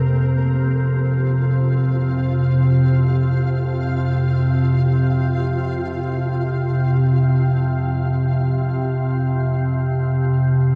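Unmoored from any pulse, this short ambient passage drifts in free time, a fragment cut from a longer piece with a cavernous, desolate mood. An organ-like drone sits up front from start to finish, its detuned sine voices sounding in unison with a slow attack, long sustain and lingering release, thickened by ensemble chorus and its own reverb. Far beneath it in level, a grainy, flickering texture built from detuned triangle tones hovers higher up, its granular surface haloed by shimmer reverb. This texture fades out across the whole of the 10.8 seconds, while the drone holds steady over an F5 chord. A huge, wet ambient reverb surrounds both parts, leaving a long, hollow tail that deepens the sense of empty space.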